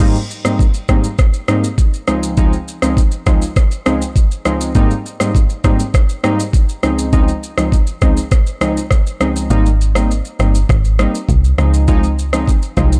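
Sunny and joyful, this afrobeats excerpt moves at 101 BPM in a straight 4/4, set in Ab major and tuned slightly flat to A4 = 439 Hz. Up-front analog-style keys carry the accompaniment from the start, their round, detuned square and sawtooth tones evolving under a filter sweep with chorus, alternating between Abmaj7 and Dbmaj7. An electronic afro-pop drum kit plays throughout, with a knocking kick, rim click, shaker and crash cymbal that sound re-recorded in a small room. At 9.5 seconds a deep, dark log drum bass arrives, its FM tone layered with noise and given a fast, percussive attack that quickly decays, while the kick briefly drops out until 10.7 seconds. The overall production sits in a digital ambience with a dark, warm character.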